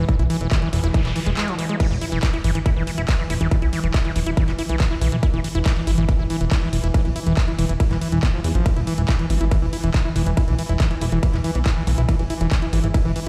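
A punchy, layered electronic kick sits up front from 0.1 seconds, driving this hypnotic, alien psychedelic trance excerpt, with a dark, funky analog bass pluck close behind and a softer electronic kit adding crash, ride, hi-hat and handclaps. A squelchy, gritty acid bass riff with resonant filter sweeps and digital delay pumps against the kick, while a detuned, chorused gated pad pulses in sustained chords in the background and a brief noise sweep passes through from 0.5 to 1.8 seconds. The mix is dry and close yet carries the air of a big sound system in a bare room, with a large studio reverb around it.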